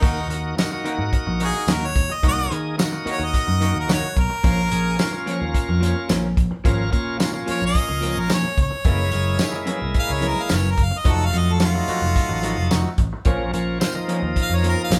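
Straight-eighth soul blues with a smoky, brooding mood, cut from a longer piece and moving at a steady, unhurried pace in a minor key. A clear harmonica carries the melody up front, its light vibrato and scooped notes sitting over a smooth top. Behind it, a bright tonewheel organ shouts full chords through a slow rotary speaker with a touch of overdrive, while an electric guitar through a small old amp adds twangy, slightly broken-up stabs colored by harmonic tremolo. A vintage muted picked bass gives round, punchy, foam-muted low notes, and a soul drum kit with a fat snare, tight kick, hi-hat and tambourine pumps in a small, close room with a rolled-off top. The whole band plays live together with moderate studio reverb, moving through a minor progression that darkens on a tense dominant chord near 11.1 seconds before settling back home at 13.3 seconds.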